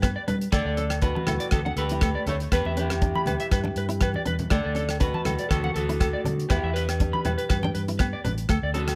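In light reverb, this sunny, danceable highlife guitar band clip swings gently as an electric guitar at the edge of break-up carries a dark, fingered melody through slapback echo, while a second compressed, picked electric guitar plays arpeggios through lush chorus and the same echo, a full-bodied nylon-string guitar fingerpicks accompaniment with audible finger squeak in the background, and a round, amped fingered bass sits beside a dry, up-front 70s drum kit of hi-hat, tight kick and rim click that plays a fill at 4.0 seconds, with ringing agogo bells and medium-tuned congas from 0.3 seconds set further back over a G, D and Em progression.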